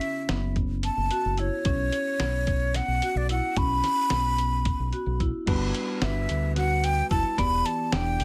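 A lightly reverberant room frames this tense, driving progressive instrumental in 7/8 at 220 BPM in B minor, where a breathy, expressive jazz flute carries the melody up front over dark, smooth marimba arpeggios, a gritty, tape-warm sampler-style drum kit with a thumpy kick and fat snare, and a round, direct fingered electric bass that enters at 0.3 seconds, before a bright, bell-like tine electric piano joins at 5.5 seconds as the harmony shifts from F#m7 and Bsus2 to Gmaj7 and Em7 in this short cut from a longer piece.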